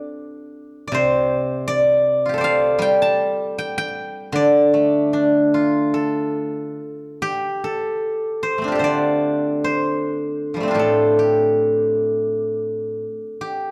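In a free, rubato pulse that drifts between 68 and 84 BPM over a loose 4/4, this brief extract of Chinese traditional music unfolds in the D yu mode with a longing, elegant mood. A solo steel-string zither, played with fingerpicks, carries everything from 0.0 to 13.7 seconds, sitting up front with a silvery, ringing tone that spans A2 to D6. The phrase shifts into a new section at 7.6 seconds, and the dark production places the instrument in a moderate concert hall reverb that lingers around each note.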